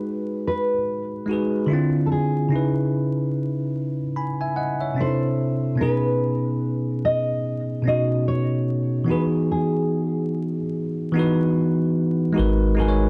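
Swung sixteenths in 4/4 give this hazy, melancholic lo-fi hip hop excerpt its lazy sway: a bright, bell-like tine electric piano sits up front with a cassette-tape, low-pass filtered tone, accompanying a dark, full-bodied nylon-string guitar melody, thumb-plucked with audible finger squeak and softened by its own low-pass filter, while a deep, round dub sub bass arrives only at 12.4 s, all set in moderate spring reverb and small-room ambience over vinyl crackle.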